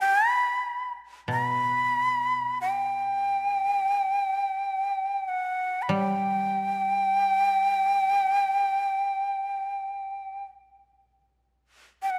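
A breathy, bright end-blown bamboo shakuhachi carries the melody up front with vibrato and a crisp, chiffy attack, while a mellow, woody koto plucked with fingerpicks accompanies low beneath it until 8.9 seconds, in this austere, meditative fragment of Japanese chamber music set in a moderate concert hall reverb with a faint mains hum.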